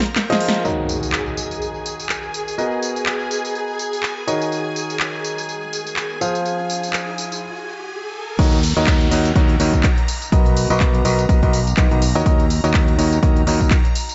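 An echo-heavy mix with light digital ambience and a dulled top end frames this bittersweet, energetic piano house cut, lifted from a longer piece. A clear, intimate concert grand leads with an up-front riff, its audible action noise, deep low register and long sustain passing through a low-pass filter, dub echo and sidechain pumping. Behind it, a shimmering vintage string machine with a sawtooth, slow-attack violin tone holds chorused chords that pump along, while a tape-warm house kit of punchy snare, handclaps, warm hi-hats and tambourine keeps a swung groove under studio reverb. Electronic effects mark the build, with an impact at 0.6 seconds and a riser from 5.6 seconds, before a short break gives way to the drop. At 8.4 seconds a punchy, layered electronic kick and a growling, overdriven fingered electric bass arrive together, thickening the low end as the chords move through Ebm7, Bmaj7 and back.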